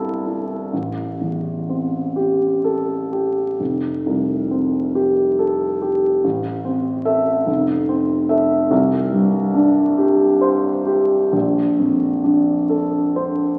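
A polished grand piano plays alone through the crackle of a very old 78 rpm record, its up-front tone ringing into a long, wet concert-hall reverb. This wistful, mysterious fragment of impressionist classical music moves in a slow, rubato 6/8, spanning the low bass to the upper middle register. Colorful harmonies drift from C6 and Am7 through Fadd9, Fmaj7 and Csus2 before settling on a Bbmaj9 at 11.3 seconds.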